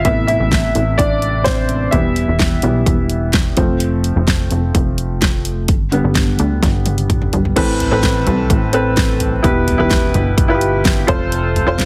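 This is hopeful, anthemic piano-driven pop at 128 BPM in a straight 4/4, tuned slightly flat to A4 = 437 Hz and cut from a longer piece. A clear, woody upright piano sits up front with long sustain and a slightly detuned, worn character, carrying the opening as a solo passage until 7.6 seconds while outlining Amadd9, Em, F and G. Beneath it, a plucky analog bass blends sawtooth, square and sine tones with ring modulation and wave-folding, giving a punchy, funky line whose filter pluck has a fast attack and decaying notes. The electronic, layered pop drum kit is also up front, with a punchy kick, a fat snare, hi-hat, handclaps, crash cymbal and toms, and a drum fill from 6.6 to 7.6 seconds leads into a second section that returns to the Amadd9, Em and F progression. The mix has light reverb and a heavily compressed, radio-style sound shaped by multiband compression.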